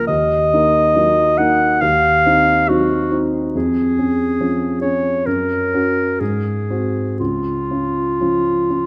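A warm production sets this short passage, cut from a longer work, in a recital hall whose reverb, with a 1.6-second decay, gives the room a wet, lingering glow. It is a tender, lyrical romantic duo for clarinet and grand piano in Db major, moving at 58-72 BPM in 4/4 with a flexible rubato, and tuned to A4 = 438 Hz. The close-miked clarinet carries the melody within a range of F4 to Gb5 with a clear, classical tone, sitting up front as the solo voice throughout the 8.9 seconds. The grand piano accompanies from Db2 to Ab4, also up front, with a dark, mellow, smooth sound that has a vintage character. The harmony opens on Ebm and passes through Cdim/Eb, Db/F, Gb and Ab7 before settling on Db at 7.2 seconds.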